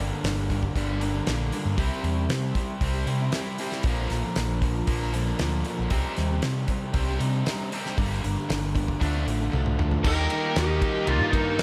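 A brooding, swaggering classic rock passage, cut from a longer piece, opens with a very quiet picked steel-string acoustic guitar beneath two bright electric guitar riffs, one raw and overdriven with slapback echo and the other tight and distorted in the background, all over a round, up-front fingered bass. A damped 70s drum kit with a fat snare, tight kick and dark cymbals comes in at 0.2 seconds, as the chords move through Gm, C, Bb, Cmadd9, Gm and Dm. A drum fill leads into a new section on Eb at 10.0 seconds, where a faint vintage string machine with cellos adds soft sustained chords, a crunchy double-tracked guitar joins the riffing, and an up-front bluesy lead guitar takes the melody over an octave-fuzz second line, both with distortion and echo.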